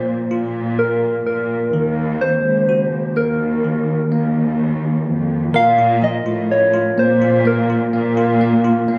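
A heartbroken pop ballad fragment in a straight, slow 4/4, where a round, warbling FM synth lead with chorus and tape echo carries the melody over a bell-like tine electric piano and a bowed chamber cello section singing with vibrato beneath, all under light reverb and captured on a phone in the room, moving from Bbsus2 to Ebm before settling on Bb5 at 5.5 seconds.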